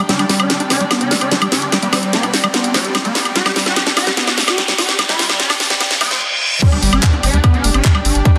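A dense, heavily limited modern mix with moderate room reverb carries this alien, driving psychedelic trance excerpt through a build-up and into a drop at 6.6 seconds. Over a round, deep analog bass, a squelchy, gritty acid bass riff with digital delay and a swarming, detuned rave lead dressed in chorus, phaser and tape echo both pump against the sidechain as filter sweeps run. Meanwhile a very quiet pulsing gated texture sustains chords while soft bowed strings float in the background, a garage kit with a cracking snare and bright hats plays a fill beneath a riser, downlifter and reverse cymbal (the cymbal arriving at 5.8 seconds), and a tight, up-front electronic kick joins at the drop.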